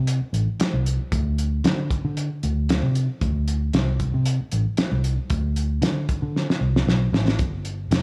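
A vintage, foam-muted fingered electric bass opens this gritty, swaggering straight-eighth soul blues, its dark, round tone amped and punchy as it sits up front across a low register. A cloth-damped acoustic drum kit joins almost at once at 0.1 seconds, pairing a fat snare and tight kick with hi-hat, all with a thuddy, rolled-off top that keeps the kit close and dry. The groove carries a faint sixteenth-note swing inside its steady 4/4 feel, giving the pair a loose, confident strut. Near the end, a drum fill runs from 6.3 to 7.4 seconds before the passage closes at 8.0 seconds. The sound is intimate, with small room ambience and little reverb, and this short cut from a longer piece stays in a single section throughout.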